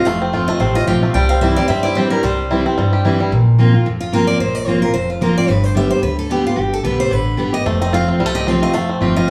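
Twangy, percussive fingerpicked banjo arpeggios sit up front for the opening 3.3 seconds and return at 7.7 s in this rustic, virtuosic swung bluegrass excerpt at 221 BPM, where a bright, full-bodied dreadnought guitar picks the melody over a second, prominent fresh-stringed guitar accompaniment with audible finger squeak, and a dark, woody pizzicato upright bass thumps beneath the F, C, Bbsus2 and G changes in a reverberant, live-sounding studio room.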